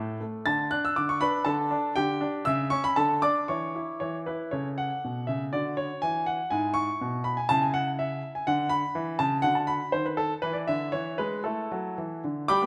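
A classical-period piano sonatina in A major, this short passage cut from a longer piece moves with a graceful, playful character in 2/4, its tempo drifting between 113 and 124 BPM under an elastic rubato. A solo baby grand piano carries everything from 0.0 to 12.7 seconds, ranging from G#2 up to A6, its tone clear, polished and placed up front. The opening section lingers around D, suspended and C#-minor colours before a brief pause at 4.0 seconds. A second section begins at 4.5 seconds, stepping through A/C#, D and E/G# toward a C#madd11, then pausing again before a closing run of A/E, Bm/D, Dsus2 and E that settles onto A5. A moderate recital hall reverb lends the piano a natural sense of space.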